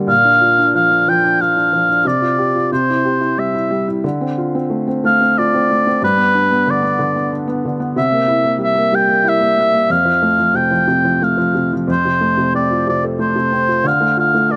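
A solo oboe carries the melody from 0.1 s, its tone warm and smooth at the top, with light vibrato, classical phrasing and a slapback echo that lends it a faint doubled edge. This is a sleepy, innocent children's lullaby in three, played with a loose, rubato feel. Beneath it, a felt-muted upright piano supplies soft, mellow accompaniment in the lower and middle range, its boxy, thin-felt sound close and intimate, with the mechanical noise of its action clearly audible. Both instruments sit up front, and the dry outdoor setting gives them little reverb or room ambience. The harmony drifts from B♭ through a suspended C into D minor seventh, G and C7 before settling on F, and a new passage begins at 11.9 s and turns toward D minor just as this fragment of a longer piece ends at 14.6 s.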